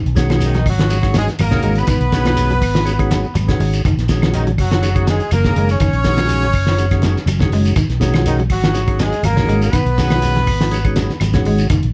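A lightly swung sixteenth-note groove drives this intense, funky afrobeat excerpt, built on a cloth-damped, thuddy drum kit with a fat snare and tight kick in a gritty, muffled small-room sound, a dark, round fingered electric bass, and background layers of grainy shekere, woody claves and very quiet congas. A twangy, slightly broken-up electric guitar picks arpeggios in the background, while a mellow, percussive tonewheel organ turns through a slow rotary speaker. On top, a clear, pop-style horn section carries the melody in octave doubling from 0.5 s, with light reverb around the mix.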